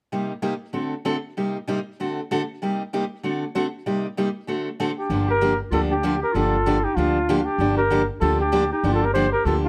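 A bright, picked steel-string acoustic guitar opens this fiery yet bittersweet excerpt of swung jazz manouche at 193 BPM in G minor, moving between Cm7 and D7 until, at 5.0 seconds, a warm, vintage flugelhorn takes the melody up front with scooped notes while a breathy clarinet with vibrato and a smooth top sings a second line in the background, and a woody, thumpy pizzicato upright bass on gut strings joins at 5.1 seconds as the harmony settles on Gm7.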